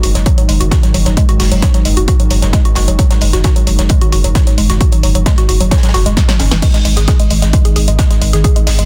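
A heavy, layered electronic kick sits up front from 0.3 s, driving this dark, hypnotic stretch of peak-time techno in straight 4/4, cut from a longer piece. Beneath it, a thick, overdriven sub bass and a deep, moody sawtooth pad with chorus and reverb both pump, while a woody, wave-folded pluck riff warbles through chorus and dub echo. A punchy analog drum machine supplies a tape-flavoured snare, hi-hats and crash, a small, smooth acoustic cocktail kit sits in the background, and a drum fill arrives at 6.2 s, all under a dense, heavily limited master.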